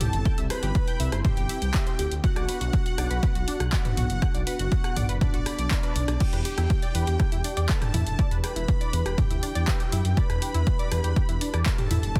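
A dense, heavily limited modern mix with little reverb opens this dark, dramatic melodic techno excerpt, moving at 121 BPM in a straight 4/4 in E minor over chords of C, Bm and Em7. A punchy analog drum machine, overdriven and re-recorded in a large room, plays from the start, supplying crash cymbal, handclaps, hi-hat, rim click and toms, and an up-front, overdriven electronic kick arrives at 0.3 seconds. Beneath it, a deep, rumbling detuned saw bass with a saturated, beating edge pumps against the kick. A thick, wave-folded unison lead carries the melody with vibrato, analog chorus and dub echo, while a fat, bright polysynth adds a second line in the octave above with chorus and delay. A tight, driving sequenced synth spins plucked arpeggios through chorus, delay and cassette tape colour, and a moody analog pad with slow attack and long release holds sustained chords in the background, every synth part breathing with the sidechain pump.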